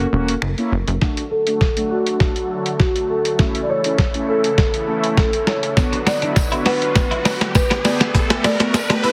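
A dry, close-miked marimba melody opens this bittersweet, energetic dance-pop excerpt over round, dark synth brass with sidechain pumping and a punchy, plucky analog bass that stops at 1.0 seconds, while a muffled, thumpy lo-fi sampler-style drum kit sits up front, a smooth, detuned supersaw holds sustained chords through a build-up with a drum fill and filter sweep, a background riser enters at 4.7 seconds, and a jingly tambourine and a clean, picked twelve-string electric guitar riff with lush chorus join near 5.9 seconds, the mix carrying light reverb and a heavily compressed radio sound.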